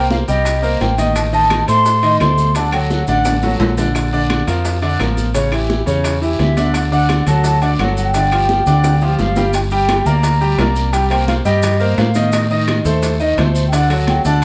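A moderate stone-room ambience frames this fiery, danceable salsa excerpt, where a breathy flute with vibrato carries the melody over a brilliant, up-front grand piano and a round, punchy fingered electric bass, while background congas, tight bongos, ringing timbales, raspy guiro, grainy maracas and very quiet woody claves drive the groove, with drum fills at 3.3 and 8.7 seconds.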